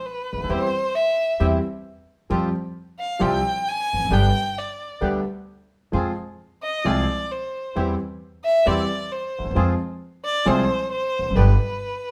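An up-front bowed violin, expressive with vibrato and portamento, carries this melancholic, tense tango fragment in a rubato feel from 0.0 seconds, over an intimate concert grand piano with audible action noise and deep bass, a woody, thumpy pizzicato upright bass, and reedy, vintage bandoneon stabs that enter at 0.5 seconds, set in a moderate studio reverb as the harmony moves through C/E, Fsus2, G and Fm.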